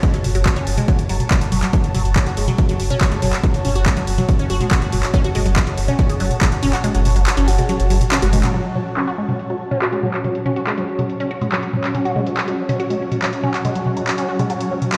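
Hypnotic and driving, this peak-time techno cut, taken from a longer piece, sits on a straight 4/4 pulse in F# minor. A squelchy, resonant blip pluck carries the riff throughout, its bright sawtooth tone colored by phaser, overdrive and digital delay, while a granular cloud pad hovers above in a blurred, evolving haze. A punchy analog kick, re-recorded in a large room, drives the opening before dropping out at 6.8 seconds, and an overdriven, up-front drum kit of handclaps, hi-hats and toms keeps going, a short fill leading into the second half. A round sine sub bass with tube saturation anchors the low end until about 8.4 seconds. From 9.4 seconds a tense, swarming drone of detuned sines enters the mix, as filter sweeps work over the drums and the pluck. The whole track rings with a light stone-room reverb, as if played on a big sound system in a bare room.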